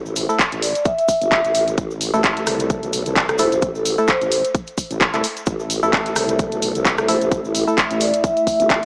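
A 16th-note swing of 56% drives this bouncy, aggressive bass house excerpt at 130 BPM in A minor, where a tight, up-front electronic kick and a tape-tinged garage kit of handclaps, hi-hat and rim click sit over a nasal, overdriven vowel-sweep wobble bass with chorus and sidechain pumping, a grainy cabasa lingers in the background, hollow percussive organ stabs ring through tape echo, a mellow vibraphone played with soft mallets carries the melody, and a moody, detuned analog pad with phaser joins at 5.8 seconds, all set in a lush hall reverb with a small-speaker sound.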